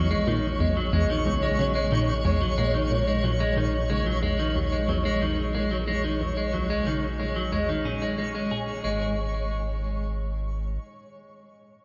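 Hypnotic and cosmic, this cut from a longer piece of ambient, sequencer-driven space music moves at 91 BPM in a straight 4/4 over an A#m7b5 chord. A bright, twangy clean electric guitar sits up front with delayed arpeggios, while a tight, detuned sawtooth-and-square synth riff, treated with chorus, phaser and delay, fades out across the first 8.8 seconds. Beneath them a round sine sub bass holds on until 10.8 seconds, and a sparkling granular FM texture adds an octave-up shimmer, all within a vast, echoing cathedral reverb before the harmony drops away at 8.8 seconds.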